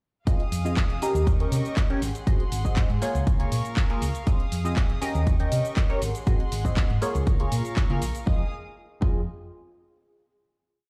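At 0.3 s the whole groove arrives at once in this groovy, nostalgic piece of filtered disco house: a punchy, up-front four-on-the-floor electronic kick drives a programmed house kit of closed and open hats, shaker and a clap on the backbeat, both parts carrying a tape-warm, layered character. Underneath, a hollow-body short-scale electric bass, fingered and amped through tube saturation, plays a round, dark, funky syncopated line. A detuned sawtooth-and-triangle polysynth with a sub octave comps in dotted-rhythm chords with a fast filter pluck, thickened by chorus and phaser, while a studio string section holds reedy, gut-string pads with light vibrato in a period style; synth, strings and bass all pump against the kick through sidechain ducking. The progression circles Fm7, Eb7, Ab7 and Db6 twice before settling on a final Fm7 chord at 8.3 s, with the kit dropping out at 8.2 s and the bass ringing on to 9.3 s. 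The mix sounds as if it were played through a big sound system in a bare stone room, giving a dry but slightly roomy feel.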